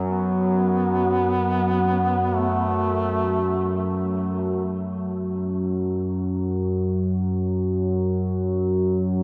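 An evolving, nasal analog drone with a sawtooth and pulse-wave tone opens this unsettling, desolate dark ambient passage in free time, its slow attack, pulse-width modulation and chorus keeping it up front and sustained until 9.2 seconds. Almost at once a warm duduk enters as the solo melody, its soft attack, vibrato and scooped notes giving a folk-style line before it ends at 4.1 seconds. A long cathedral reverb surrounds the whole piece, and the duduk also trails a diffuse ambient delay in this fragment of a longer work.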